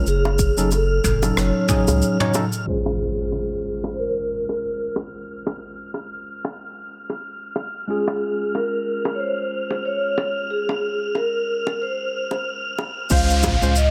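Warm and smooth, this sunset chillout excerpt at 92 BPM in Db major swings on the sixteenths, with a mellow vibraphone melody played with soft mallets, fast motor vibrato and delay over a clean tine electric piano and an airy, wind-like tuned noise texture held high throughout. Tight, high-tuned bongos played with soft hands run nearly the whole length, while a round, dark analog bass, a polished jazz brush kit with rim click, shaker and toms, and a deep, layered electronic kick sound only at the opening and return at 13.1 s, when an electronic impact and downlifter also comes back after first appearing at 2.7 s. Through the middle a filter sweep runs under light small-room reverb as the harmony moves from Gbm6 to Dbmaj7, with a brief break in the chords before Dbmaj7 returns.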